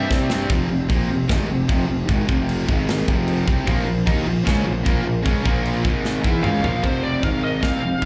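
Tight, polished metal drums with bright cymbals sit up front in this powerful, swaggering hard rock piece at 152 BPM, heard live through a club PA, while a punchy, growly fuzz bass and two overdriven, picked guitars grind out a riff over F5, Ab5 and Bb5 chords (the second guitar rejoining at 3.7 seconds), a swirling, detuned sawtooth pad with phaser and chorus hovers in the background, and a dark, high-gain lead guitar with slapback echo and delay takes the melody from 6.4 seconds.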